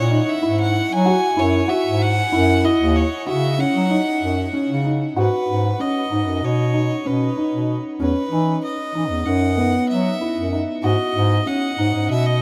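Lopsided 9/8 phrasing drives this restless, shimmering chamber piece cut from a longer work, as a clear, airy-bowed violin carries the melody with light vibrato over a felt-muted upright piano's dark, boxy arpeggios and an up-front bass clarinet's soft-attacked bass line, all suspended in a vast, echoing space whose huge ambient reverb lingers around the sus and add9 harmonies.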